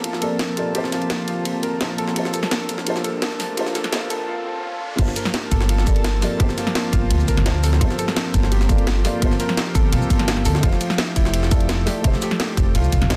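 Dreamy, melancholic liquid drum and bass in which two muted upright pianos, one playing mellow, thick-felt accompaniment through delay and the other intimate arpeggios with audible action noise, float over a breathy, chorused pad and a woody, thumpy pizzicato upright bass sitting up front, while a garage kit with a cracking snare and a gritty, pitched-up jungle sampler kit in the background carry the groove, a very quiet riser builds from 2.6 seconds, and a tight, tape-warm electronic kick lands at the drop at 5.0 seconds.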